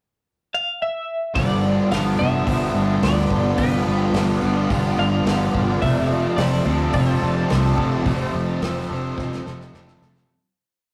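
A clean, compressed twelve-string electric guitar opens at 0.5 s with a motif-based melody treated with tremolo, playing through a short pickup bar; the crunchy overdriven guitar joins at 1.3 s, just before the band arrives at 1.4 s. This wistful, dreamy piece of rock, shoegaze and dream pop sits in G mixolydian at 108 BPM in a straight 4/4, with harmony moving from G7 to F6. A thick, dark fuzz guitar and the crunchy overdriven guitar strum chords with whammy-bar dips. Behind them, a twangy, slightly broken-up guitar through a small old amp picks arpeggios, and a vintage phased string machine adds a swirling, bright sawtooth pad with ensemble chorus and a slow attack. Underneath, a round, foam-muted fingered bass drives eighth notes, and a loose indie drum kit with a tight kick, medium-tuned snare and hi-hat keeps a big rock groove. The rough rehearsal-room sound carries warm saturation and wet small-room ambience, and the piece fades out from 8.1 s, with a drum fill at 9.2 s.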